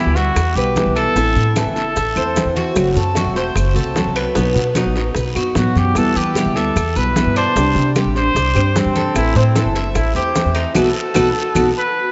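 Cuban son and guajira at 150 BPM in E minor, this danceable, nostalgic excerpt sets a punchy, vintage-toned trumpet up front with vibrato, playing from the start, breaking off at 2.5 seconds and returning at 5.6, over fingerpicked full-bodied nylon-string guitar with finger squeak, metallic double-strung tres arpeggios in diffuse ambient delay, thumpy gut-string upright bass, and background ringing low congas, raspy guiro and grainy maracas with very quiet tight bongos and woody claves, all bathed in a dreamy, reverb-soaked, dark-topped mix with a band accent at 10.8 seconds.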